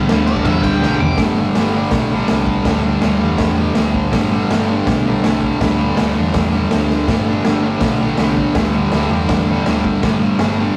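A brief, dark octave-fuzz lead guitar line flares high over the band at 0.3 s, as a double-tracked, compressed fuzz guitar riff, a round hollow-body short-scale bass and a raw garage drum kit drive this swaggering garage rock excerpt in G major at 163 BPM. A drum fill closes that opening burst, and from 1.2 s the lead drops out and the harmony settles from G onto a G5 power chord. The bright, distorted riff sits up front and carries the track, with the picked bass, amped and dark, sitting lower beneath it. The acoustic kit, also up front, has a punchy kick, a medium-tuned snare, hi-hat, ride cymbal and toms, all with a smooth, rolled-off top, and it plays another fill at 6.9 s. A modest small-room ambience and saturated rehearsal-room roughness give the performance a raw, live edge.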